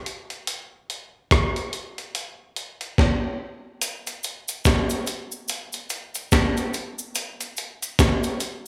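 A moderate plate reverb and a small room give this short reggae cut, taken from a longer piece, a smooth and romantic glow. It moves at an easy 72 BPM in 4/4, with a 60% swing on the sixteenths that gives the groove a relaxed lilt. A sampler-style breakbeat kit, compressed and gritty, sits up front from 0.1 s and carries the rhythm with a thumpy kick, a medium-tuned snare, rim clicks and hi-hat. Re-recorded in a large room and treated with gated reverb, the kit has a roomy, punchy character. At 3.8 s, as the music moves into its second section, a cabasa joins in the background, acoustic, close and dry, with a texture that recalls maracas and a group handclap.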